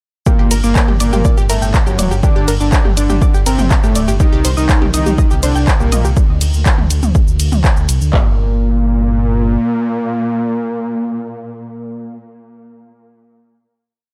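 A dry, gritty hardware recording in digital ambience carries this dark, driving melodic techno piece at 122 BPM in G harmonic minor, where a punchy four-on-the-floor kick and clap sit up front over shaker, ride, low tom and dark closed hats, a rumbling detuned saw bass rolls in sixteenth notes with sidechain pumping, a lush unison pluck spins a 16-step arpeggio with a filter sweep and tape echo, and a fat, wave-folded analog lead with vibrato and cassette-tape colour repeats its riff over Gm and Cm, doubled an octave lower by a smooth, soft supersaw in the background, before the drums and pluck drop away for a final Gm chord from 8.1 s that the lead and supersaw hold until 12.2 s.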